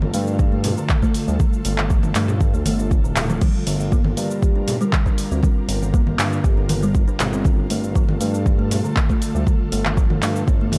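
An airy, warbling pad sustains chords over a smooth, nasal synth bass and vintage-sounding congas set in the background, opening this hypnotic afro house excerpt at 119 BPM as the harmony moves from Dm/G to Gm7 and back. A mellow, woody kalimba plays plucked arpeggios through a digital delay, while an overdriven deep house kit adds crash, handclaps, hi-hat and shaker, and a deep electronic kick sits up front from 0.4 seconds. Sidechain pumping breathes through the pad, bass and kalimba, and the whole production carries a dark, warm digital ambience.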